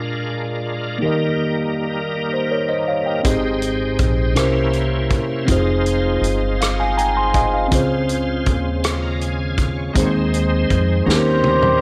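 A worn, slightly out-of-tune tine electric piano sits up front through its built-in speakers, carrying this slow, hopeful gospel excerpt in 6/8 at 54 BPM in Ab major, while a bright, shouting tonewheel organ holds sustained chords through slow rotary speaker, light overdrive and chorus vibrato. A woody pizzicato upright bass and a natural, punchy country drum kit with hi-hat, rim click, snare and toms join at 3.2 seconds; the electric piano plays a fill at 6.6 seconds as the chords move from Abmaj7 and C7b9 through Fm7 to Dbmaj7. At 11.1 seconds a drum fill plays over an Eb7 as a mellow, octave-doubled horn section with light vibrato enters on the melody, all in a soulful echo-chamber reverb.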